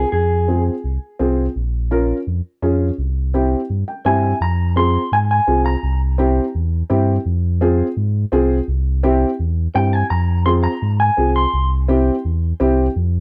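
A dry, close 1970s-style studio sound frames this passionate, danceable Latin cut at 168 BPM in a straight 4/4, with the harmony moving through Fm, Bbm and C before settling into F harmonic minor at 4.4 s. A deep, full sub bass with an octave holds the low end up front, while a woody, short-sustained upright piano carries the accompaniment and drops in a fill from 3.7 s. A mellow, clean, fingered electric guitar with spring reverb states brief melodic phrases, returning at 4.1 s and again at 9.8 s.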